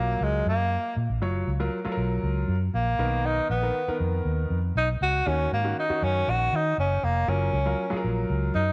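Warm and joyful, this short soul excerpt moves at 119 BPM in F# major, with a breathy tenor saxophone carrying the melody as a solo throughout, its intimate, whispered tone marked by vibrato and scooped notes. A clear concert grand piano with deep bass supplies the accompaniment, while a dark, round, foam-muted electric bass sits up front beneath it, all within a moderate echo chamber reverb. The harmony moves from F#maj7 to Bmaj7 at 3.0 seconds, D#m7 at 5.3 seconds, and back to F#maj7 at 7.3 seconds.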